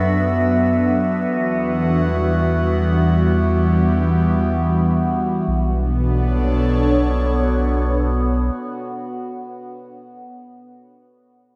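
Serene and spacious, this ambient fragment from a longer piece drifts in free time in B minor. An airy, breathy pad sits up front with detuned sawtooth and triangle tones, a noise layer and a moving notch. Its slow attack and long release blur the soft, sustained chords, with chorus added. Beneath it, a round sine sub bass adds deep, tube-saturated weight before falling away at 8.5 seconds. A resonant drone of sawtooth and sine tones sweeps through shifting overtones, coloured by chorus, phaser and its own reverb, and fades at 9.1 seconds. The harmony moves from D6/F# to Em7, then settles on Bm9 at 5.5 seconds, while a wet spring reverb with a 2.6-second decay fills the whole space.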